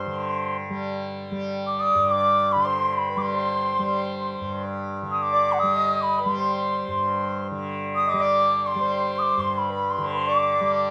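Devotional and meditative, this short Hindustani classical passage in G major unfolds in free time, cut from a longer piece. A bright, airy bansuri carries the melody high in its range, its straight, tongued tone sounding reedy yet somewhat distant. Beneath it, a pedal harmonium holds a mellow, breathing second line that sits forward in the mids. A softly plucked tanpura supplies a buzzing, shimmering drone low in the texture, and all three parts play throughout the 10.9 seconds. Plate reverb colours each instrument, and the wet room ambience and rough home-demo mix give the recording an intimate, unpolished feel.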